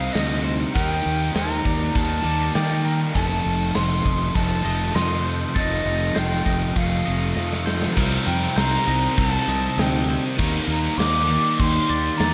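A hazy, wistful slice of shoegaze-tinged dream pop rock, this excerpt moves at 100 BPM in a straight 4/4 and sits in F mixolydian, cycling through Cm7, Ebmaj7 and F7. A reedy concert flute carries the melody with a straight, tongued tone and a slapback echo, floating over a very quiet glassy FM pad whose slow-attack, ethereal chords linger with long release and chorus. Beneath it, a biting overdriven guitar with reverse reverb and a chorused fuzz guitar share the riff, while a twangy clean guitar picks arpeggios in the background through subtle chorus and slapback echo. A growly, punchy fuzz bass anchors the low end, and a gated 80s drum kit enters at 0.2 seconds, up front in a bright stone room with bright cymbals and a tight kick. After a drum fill, a very quiet double-tracked distorted guitar joins at 8.0 seconds, thickening the riff as the harmony returns to Cm7, all set in a light reverb.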